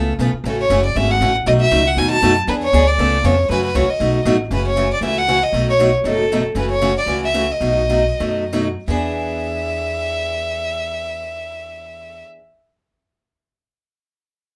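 A close, intimate violin carries the melody from 0.5 s with light vibrato, a soft attack and an airy, sul tasto bow, up front in this charming, swinging excerpt of acoustic string swing in the jazz manouche style. Beneath it, a bright, boxy parlour-style steel-string guitar picks the accompaniment with audible finger squeak, while a woody, thumpy pizzicato upright bass on gut strings supplies a dark low end. The trio sits in a moderate club reverb, and the pace slows between 6.6 and 8.9 s before the final section settles onto E7.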